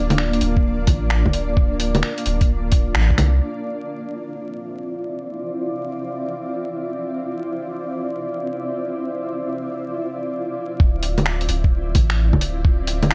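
Nocturnal and ghostly, this future garage excerpt moves at 130 BPM in 4/4 with a 65% swing on the 16ths, set in D minor. A granular cloud pad holds sustained chords throughout, shifting from Bb/D to Dm9; its detuned sine and sawtooth voices feel blurred and bright, bloom slowly, linger on long releases and pump against the sidechain inside their own reverb. Beneath it, a soft dub sub bass of triangle and square waves gives a deep, round foundation that also pumps. The drums come from a muffled, compressed sampler-style kit of bongos, finger snaps and hi-hat, joined by a thumpy electronic kick placed up front, all with studio reverb. After the full band hits an accent at 3.0 seconds, the bass and drums fall away by 3.4 seconds, leaving the pad floating over a bed of lightly reverberant vinyl crackle until the groove returns at 10.8 seconds.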